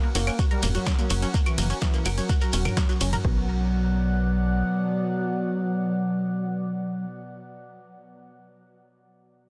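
A driving pulse at 126 BPM anchors this short, dark and melancholic melodic techno cut in B minor, opening on a drop over an F# chord before settling onto B minor at 3.2 seconds. A deep house kit of claves, hi-hat, ride cymbal, toms and a punchy snare comes in first, followed moments later by an overdriven, deep electronic kick that sits up front, with a grainy shekere tucked in the background, and the band lands an accent at 2.8 seconds before the drums fall away. Beneath them, a tight sawtooth and square-wave sequencer bass with ring modulation and a plucky filter drives along with sidechain pumping, while a detuned sequenced synth spins mellow arpeggios through chorus and tape echo. An evolving wavetable pad of morphing triangle and sine tones holds slow-attack chords with chorus and built-in reverb across the whole cut. Above it all, a smooth, expressive synth lead with vibrato carries the melody in a low register, its dark sawtooth-and-triangle tone colored by chorus and tape echo. 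The digital ambience and dense, heavily limited modern master give the sound a compact, forceful weight.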